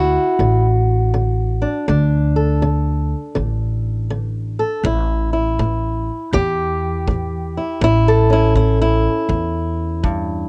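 A swung eighth-note shuffle at 81 BPM in 4/4 drives this brief rollicking, swaggering cut of acoustic country blues in A mixolydian, taken from a longer piece. A fingerpicked old ladder-braced acoustic guitar carries the melody from the start, its dark, boxy tone and old strings giving it a worn, woody character up front. Beside it, a pizzicato upright bass with steel strings holds down the low end with a growly presence. At 4.8 seconds a kick drum joins, punchy and polished with brushes, set in a small, airy room. The harmony sits on D before moving to A at 4.9 seconds. The sound is dry and close, in the manner of a 1970s studio recording.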